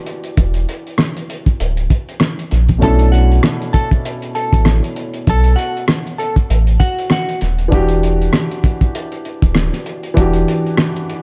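A swung boom-bap hip-hop groove drives this short cut, carried by a cloth-damped drum kit whose tight kick, fat snare, rim clicks and hi-hat sound muffled, gritty and saturated, with a rolled-off top and an up-front, small-room presence. Beneath it, a deep, round sine sub bass holds the low end, its fast attack and sustained notes sitting mellow and forward in the mix. A woody upright piano, coloured by cassette tape, supplies Em9 and Bm11 chords that set a dark, reflective mood. At 2.8 seconds a slightly broken-up electric guitar enters with a fingered, shadowy melody, bathed in spring reverb and delay, and it drops out at 7.4 seconds. Small room ambience wraps the fragment, giving it a lo-fi, intimate feel.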